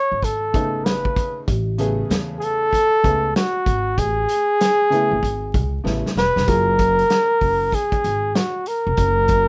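Jazz-hop at 96 BPM with a 63% sixteenth-note swing, this cool, smooth fragment sets an up-front, breathy flugelhorn melody with vibrato and a soft attack over a woody, dark pizzicato upright bass, a punchy vintage drum kit with a rolled-off top and a pumping small-room sound, and an intimate upright piano with audible action noise that drops out at 6.7 seconds, moving from Amaj9 to F#add9 at 6.5 seconds after a drum fill, all in a rough home-demo mix with light reverb and vinyl crackle.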